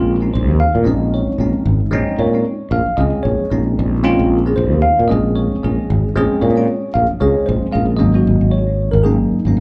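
A bell-like tine electric piano and a growly fretless electric bass open together on a Bb minor ninth chord in this short cut from a longer electric jazz fusion piece. The mood is slick and driving, set at 114 BPM in 4/4 with a light sixteenth-note swing. The electric piano plays accompaniment from Gb3 to F5, its bright, clean tone colored by a phaser and a slapback echo. Beneath it, the sustaining fretless bass sits up front with a warm, direct sound, ranging from Ab1 to Bb2. At 8.0 seconds the harmony shifts to an Ab7sus4 for a new section, and both parts play through to 9.6 seconds. Recorded live at a gig through the venue's PA, the performance carries a light club reverb.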